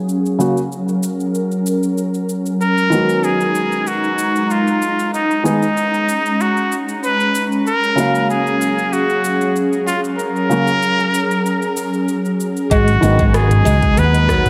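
Set in a lush hall reverb, this meditative organic downtempo excerpt at 95 BPM in G# dorian opens with a felt-muted upright piano, soft with audible action noise and delay, beneath an ethereal, detuned pad that breathes with sidechain pumping and ensemble chorus, while a tape-warm electronic kit adds crisp hats, rim clicks, shaker and toms. At 2.6 seconds a trumpet with straight mute takes the melody, nasal and breathy with vibrato, sitting up front in a jazz-style solo over chords moving between F#maj7 and G#m7. At 12.7 seconds a bright, double-strung oud begins plucking arpeggios, alongside a round, punchy fretless bass and a deep, layered electronic kick.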